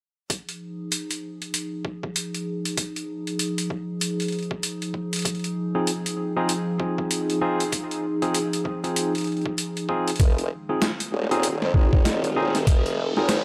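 Funky and gritty, this glitch hop excerpt in F minor moves at 97 BPM with a 16th-note swing, opening on a thumpy, overdriven, pitched-down kick and a sampler-style kit with a high-tuned snare, hi-hat and dub echo, soon joined by a warbling, nostalgic tape-like pad holding dark, lo-fi Fm7 chords with chorus and sidechain pumping. A barky tine electric piano adds bright stabs through a combo amp with 12-bit grit from 5.7 s, and at 10.2 s a build-up begins as a saturated, formant-swept wobble bass enters and a filter sweeps the pad. An electronic riser sits in the background from 11.5 s, while a very quiet, dark fuzz lead guitar joins near the end in an echo-heavy mix with chamber reverb.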